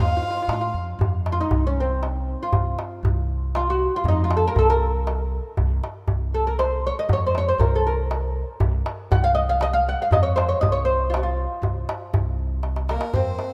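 A straight 3/4 pulse at 118 BPM drives this melancholic, soulful Arabic maqam ensemble piece in F hijaz, cut from a longer performance. A mellow, fretless oud carries the melody up front with deep, double-strung plectrum plucking. Beneath it sit dark, thumpy pizzicato upright bass on gut strings and a crisp metal-shelled darbuka, which enters at 0.5 seconds and plays a fill from 12.6 seconds. A single bowed violin with light vibrato and an airy, intimate tone adds a brief second line at the opening and again from 12.9 seconds, its slapback echo set in light reverb and small room ambience in a rough home demo mix.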